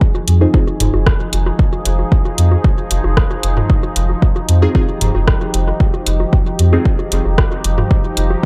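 A deep, moody pad and an overdriven electronic kick open this hypnotic, cavernous dub techno excerpt together, the pad holding sustained chords built from detuned sawtooth voices with a slow attack, chorus, its own reverb and a sidechain pump. The kick sits up front, deep and layered, re-recorded in a large room, while a soft, round sub bass of triangle and square waves joins just after, pumping beneath it on a sustained Fm7. A deep house kit adds metallic, overdriven hi-hats and rim clicks caught in a dub echo. Further back, analog-sounding electronic bongos and toms with a tape-warmed tone pump and echo in the background. A soft, nasal chord stab with a filter sweep and phaser flickers briefly at 0.4 seconds, then returns at 4.6 seconds, its dark, decaying hits trailing into the echo-heavy mix.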